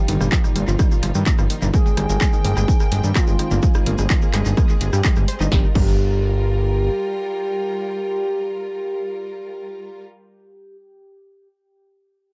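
Melodic techno in G phrygian at 127 BPM, this dark, driving fragment from a longer piece opens on a drop that runs until 5.5 seconds, with an overdriven, up-front electronic kick and a fat, detuned sawtooth bass pumping underneath as the chords shift from Ebadd9/G to Abmaj7/G. A layered techno kit adds a punchy snare, tape-warmed hats, handclaps, rim clicks and crash, while a grainy, saturated cabasa sits low in the mix, both carrying tape echo. In the background a lush unison sawtooth pluck plays arpeggios spanning Bb2 to C6, its short filtered decay smeared by echo. Above it, a smooth, expressive portamento lead with vibrato, chorus and a moving notch sings a narrow melody between F4 and Ab4, while a clear, biting string ensemble holds sustained chords throughout. At 5.5 seconds the harmony settles on Gm7, and the drums and pluck stop by 5.9 seconds, the bass by 6.9 seconds, leaving lead and strings in a dry, echo-heavy space.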